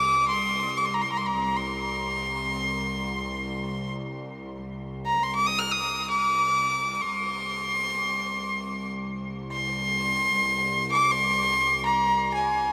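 Melancholic and full of longing, this brief passage from a longer Arabic maqam ensemble piece unfolds in free time in maqam bayati on C, tuned to A4 = 445 Hz. A single bowed violin carries the melody up front, high in its register from Ab5 to F6, with a biting, earthy tone, light vibrato and a smooth top. Beneath it, a bowed cello section holds a low drone on C2 from 0.0 to 12.7 seconds, its gut-string, period-style sound reedy and close, sitting well below the violin in level. A huge ambient reverb with an 8.1-second decay places the music in a vast, echoing space. The two parts play together throughout the 12.7 seconds, the lone violin line floating over the steady, warm bed of the drone.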